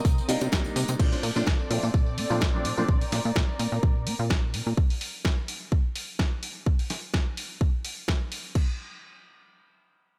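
A groove with a light sixteenth-note swing drives this joyful, feel-good slice of filtered disco house, cut from a longer piece. A punchy, tape-warm electronic kick sits up front, joined by a gritty, compressed sampler-style soul kit of snare, hi-hat, crash and tambourine, plus a separate tambourine tucked in the background, with sidechain pumping on the kit's hats, percussion and cymbals. Underneath, a plucky, funky analog bass with fast-attack, decaying notes and tube saturation pumps against the kick, and a filter sweep runs across it from 1.0 s. A dark, veiled con sordino string section holds low-passed, pumping chords with vibrato, while a grand piano briefly adds phased, filtered accompaniment. The harmony moves from Cm7 to Bbmaj9, and at 4.8 s the strings and bass drop out, leaving the drums to carry on in a small-room ambience.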